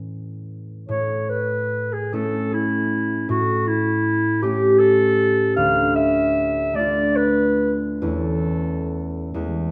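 Rubato phrasing in a lilting 6/8 carries this serene, lyrical romantic duo for clarinet and concert harp, a short passage cut from a longer piece. The harp opens alone at 0.0 seconds with a fingerpicked, ringing accompaniment reaching down into its deep register. The clarinet enters at 0.9 seconds to sing the melody in a warm, roomy, classical voice that sits up front yet carries a distant quality. Beneath it the harmony moves from A to A7, darkens to Dm, and settles on A/E. Both instruments sit in a reverberant recital hall, tuned to A4 = 435 Hz, and the harp rings on briefly after the clarinet's final note.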